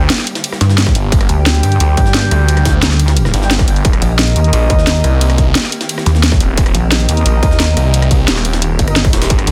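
A swirling, thick detuned saw bass, run through a phaser and tube saturation, opens this aggressive, tense cut of dark technical drum and bass, soon joined up front at 0.6 seconds by a heavy pulsing pluck wobble bass with chorus and a distorted, layered electronic kick at 0.9 seconds. A produced drum and bass kit drives hi-hat, rim click and a cracking snare, while a gritty, pitched-up jungle sampler-style kit with ride and a high-tuned snare sits in the background in a large room. A swarming, granular drone of sustained chords hangs behind in its own reverb, both it and the saw bass pumping with sidechain compression, as a distant, roomy brass ensemble adds classical-style stabs through a digital delay, all within a dense, heavily limited modern master.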